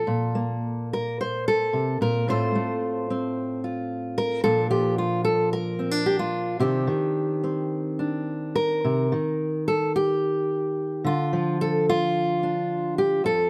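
Folk piece for solo fingerpicked steel-string acoustic guitar, haunting and wistful, moving at 110 BPM in 4/4 with a loose rubato feel in C dorian. The guitar sits up front with a dark, woody tone from old strings, spanning F2 to C5 under light reverb as it passes through Bbsus2, F/A, Bb and Cmadd9 before a repeated phrase turns to Cm and Dm. This short cut from a longer piece runs to 13.5 seconds.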